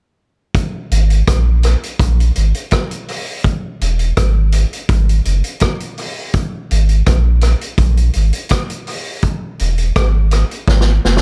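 A vintage acoustic drum kit opens this hypnotic, laid-back roots reggae excerpt at 83 BPM in a straight 4/4, its punchy kick, medium-tuned snare, rim click and hi-hat sitting mid-forward with a rolled-off top and a dub echo, before a deep, round sine sub bass with a fast attack and sustained notes joins up front at 0.9 s, both heard close and dry, with a drum fill arriving at 10.7 s.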